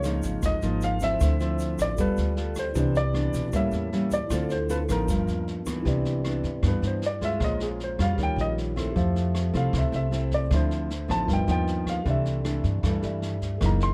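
A sophisticated, breezy bossa nova in C major opens at a brisk 155 BPM in straight 4/4. The full band sounds together from the start: an up-front, fingerpicked nylon-string guitar with audible finger squeak, a woody, thumpy pizzicato upright bass on gut strings, a clean tine electric piano and a boomy, roomy brush kit with kick, rim click and a medium-tuned snare heard from a distance. A grainy tube shaker sits close but in the background until 5.9 s, when it stops. The baby grand piano carries the melody, its dark, intimate tone marked by short sustain and audible action noise, and at 5.9 s it moves into a solo that runs to the end. Harmonies drift from an opening Db6/9 through Dm9, G9 and a Cmaj9, and later through Bbm7, Eb9 and Fmaj7 before settling on C6/9. The sound is dry, with little reverb, and the passage is cut from a longer piece.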